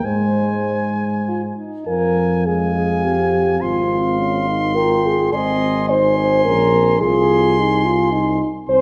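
Triumphant and warm, this classical brass quintet excerpt moves in a rubato 3/4, with a bright trumpet carrying the melody high above a mellow, soft-edged flugelhorn on the second line. The French horn sounds distant and roomy while the close-miked euphonium and the up-front tuba add light vibrato to the accompaniment and bass. A wet scoring-stage reverb surrounds the ensemble as the harmony moves from Ab to F minor at 1.9 seconds and back toward Ab.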